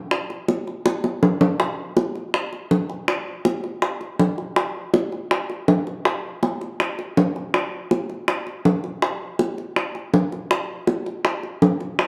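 Round, low-tuned acoustic bongos sit up front with a close, small-room character in this nostalgic Latin excerpt at 162 BPM in a straight 4/4, playing from 0.1 s with a drum fill between 0.9 and 1.6 s that leads into the next section, all set in a dark production with a lush large-studio reverb.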